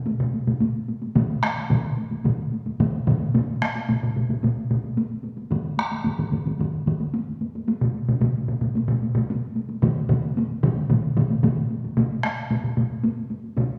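Driving and powerful, this short cut from a longer Japanese traditional taiko drum ensemble piece moves at 111 BPM in a straight 4/4, with a hard-stick taiko ensemble up front from the start, joined by one heavy-stick solo taiko part with a vintage, band-limited sound and another heavy-stick solo taiko part entering at 1.2 s and dropping out at 11.6 s, all set in the wet reverb of a recital hall before a brief closing section begins at 12.0 s.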